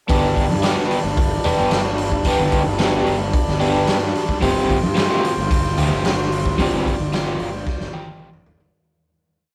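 Kaleidoscopic and hypnotic, this short psychedelic rock piece rides a straight 4/4 groove at 111 BPM in G mixolydian, moving from Gadd9 to Fsus2/G at 4.4 seconds. Up front, a crunchy, double-tracked overdriven guitar plays a riff of short syncopated chords, its picked tone bright and shimmering with tremolo. Beneath it, a fuzz-drenched fingered electric bass drives a syncopated riff, while a reedy, breathing pedal harmonium, close-miked and dry, holds mellow sustained chords as a full pad. The raw garage drum kit sits up front with a punchy kick, a medium-tuned snare, hi-hat and toms, its dark, smooth, rolled-off top set in a stone room, laying down a big rock groove. The whole piece has a rough rehearsal-room sound with saturation and moderate reverb, fading out from 6.6 seconds as a drum fill closes it at 7.7 seconds.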